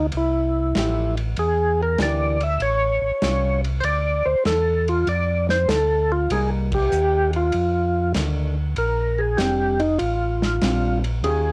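A dark, cassette-tinged home recording in a moderately reverberant room carries this soulful, bluesy soul jazz organ trio fragment at 97 BPM, swinging in 4/4 through chords from Fmaj9 to Bb69. Up front, a clear, percussive tonewheel organ with key click and slow rotary shimmer takes the melody, while a round, lightly overdriven second organ voice handles the bass. A hushed acoustic drum kit with dusky cymbals and a punchy kick sits behind them, a clean, compressed hollow-body guitar enters at 0.8 seconds with fingered accompaniment, and the band hits an accent at 6.6 seconds.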